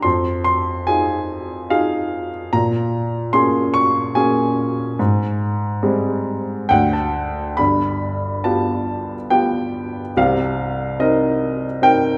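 Classical solo piano in 3/4 at 71 BPM, this reflective, melancholic fragment of a longer piece has a warm, present baby grand moving with rubato through Fm7, Bbm7 and Abmaj7 to a brief fill at 6.3 seconds before turning to G7 at 7.6 seconds and Cm7 at 10.2 seconds, all set in a wet recital-hall reverb.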